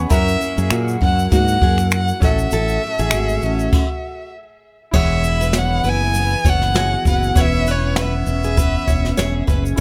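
Carefree and easy-going, this brief acoustic pop excerpt at 99 BPM in E major sets a close, expressive bowed violin melody with vibrato and portamento, carried on tape echo, over double-tracked picked dreadnought guitar, a second full-bodied guitar playing arpeggios through its own tape echo, a punchy, up-front fingered electric bass, a brilliant grand piano with long sustain in the background, and a small-room brush kit with dark cymbals, boomy kick, shaker and finger snaps, all in a light reverb, with a stop from 3.7 to 4.9 seconds before the harmony settles on Eadd9.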